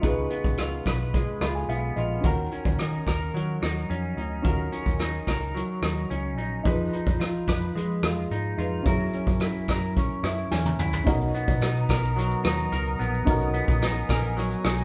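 Indie pop with a bedroom-pop haze, this lonely excerpt moves at 109 BPM in a straight 4/4, with a twangy, compressed clean electric guitar up front and a soft brush drum kit. Beneath them sit a round, foam-muted vintage fingered electric bass and a dark, woody upright piano whose audible action noise adds intimacy and which slips in short fills, all played live in one room with moderate studio reverb. The chords drift from Db7 through Ebm7, Fm7b5 and Gb7 before a drum fill at 10.5 s leads to Bmaj7, where a detuned, lo-fi tape-like pad warbles in at 11.1 s behind the band, colored by chorus, phaser and its own reverb.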